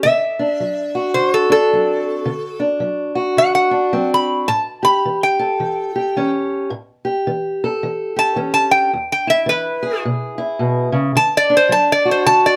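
A lightly swung 4/4 feel sets a laid-back, soulful pace for this short acoustic country blues duo, cut from a longer piece. A lap resonator guitar carries the melody throughout, played with a steel bar and fingerpicks, its tone bright, metallic and nasal, sitting up front with a plate reverb around it. Beneath it, a fingerpicked steel-string parlour guitar supplies the accompaniment from 0.0 to 12.6 seconds, dark and boxy in character and also up front in the mix. The harmony moves from D7 to A7, then to E at 8.9 seconds before returning to D7. A light reverb gives the pair a modest sense of room, and the resonator's slide solo runs the full length of the passage.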